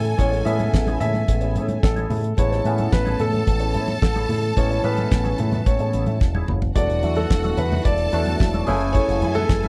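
Glamorous and sultry, this disco excerpt sets a concert grand piano melody over lush, bowed strings, a barky, lightly overdriven tine electric piano with phaser, a dark, clean electric guitar with wah and chorus tucked in the background, and an up-front picked bass through an envelope filter, all driven by a dry, polished 70s drum kit with a fat snare and tight kick, plus very quiet, saturated congas, while a drum fill at 6.2 seconds ushers in a distant, mellow French horn section holding sustained chords from 6.8 seconds in a close, 1970s-style studio sound.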